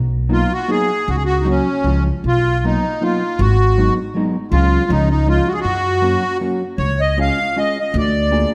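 A woody pizzicato upright bass opens this short musette waltz fragment, and at 0.3 seconds a reedy, sweet accordion with light tremolo tuning takes the melody, close and up front, over a dark, clean hollow-body electric guitar playing fingered accompaniment. The mood is whirling and charming, with a swung, rubato lilt in three, and a moderate scoring-stage reverb gives the trio a sense of space. Around 6.8 seconds the harmony shifts into a new section before the fragment breaks off.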